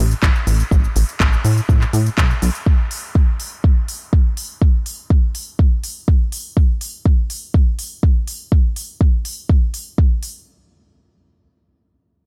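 A deep, up-front electronic kick drives this expansive progressive house excerpt at 123 BPM in a straight 4/4, tuned to A4 = 441 Hz. It is layered with a house drum kit of cabasa, handclaps and crisp hi-hats that sit lower in the mix and carry on until 10.3 s. A plucky analog bass opens the piece, punchy and funky, with a detuned, wave-folded blend of sawtooth, square, sine and triangle tones. Its fast-attack filter pluck decays into a mellow tail, with sidechain pumping. The bass stays between A1 and A2 and falls away at 2.5 s, leaving the percussion to push the driving groove forward inside a digital ambience.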